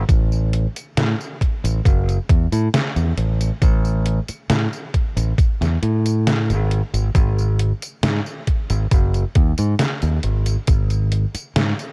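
At a slow, straight 68 BPM in 4/4, this woozy, faded vaporwave excerpt is driven by a thumpy, up-front electronic kick and a detuned 8-bit drum machine whose medium-tuned snare, hi-hat and tambourine carry gated reverb and a tape-warm, small-room character, while a bright, direct fingered electric bass sits up front between F#1 and A2, all in a room with little reverb and a cassette-tape sheen.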